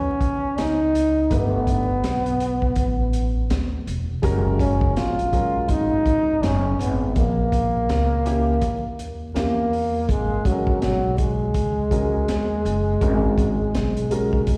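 Heard as a live gig through a venue's PA, with recital-hall reverb and vinyl crackle, this smoky, nocturnal jazz-hop excerpt sets a breathy, whispered trombone melody over a woody, growly pizzicato upright bass, with a crunchy, saturated breakbeat kit (punchy kick and high-tuned snare) entering at 0.2 seconds and dark, mellow grand piano chords arriving at 1.3 seconds, the trombone and piano both carrying plate reverb and slapback echo.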